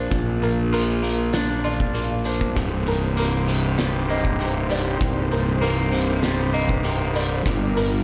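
A straight 4/4 pulse at 98 BPM drives this brooding, melancholic post-rock excerpt in C minor, anchored by an oversized low-tuned drum kit with a fat snare, punchy kick and hi-hat in a bright, pumping stone room, under an up-front, round fuzz bass fingered in the low register. A twangy, clean electric guitar with phaser and tape echo spins arpeggios over a Bb harmony, joined in the background by a felt-muted upright piano whose intimate arpeggios carry audible action noise and a tape echo. At 2.6 s a veiled con sordino string section enters with sustained chords as the harmony moves to Cm7, reaching Gm7 at 7.5 s, all in a moderate recital hall reverb.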